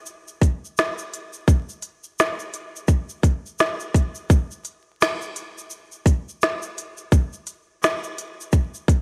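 Mellow and nostalgic, this hip hop groove at 85 BPM in 4/4 with a swung 16th feel runs from 0.1 to 9.0 seconds on an up-front organic electronic drum kit of tight kick, woody snare, crisp hi-hat, shaker and finger snaps, its tape-tinged, large-room tone set in light reverb within a rough home demo mix laced with vinyl crackle, cut from a longer piece.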